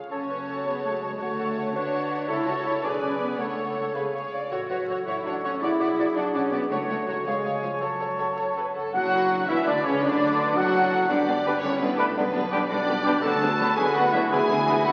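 Urgent and restless, this dramatic romantic orchestral movement in 6/8 is cut from a longer piece. A lush, focused violin section carries the melody with vibrato, while a second violin line, a clear close-miked clarinet, a pure, distant silver flute and a roomy solo oboe add supporting lines around it. Rich violas fill in the accompaniment, mellow French horns hold sustained chords, and cellos and double basses give the bass a smooth, even footing, all set in the background, with a very quiet concert harp ringing out fingerpicked arpeggios. At 8.9 s the harmony shifts and the brass joins: a bright, tight trombone section adds sustained chords, a distant trumpet section plays very quiet stabs, and a solo tuba deepens the bass. The sound is wet with the reverb of a scoring stage and carries the crackle of a very old 78 rpm record.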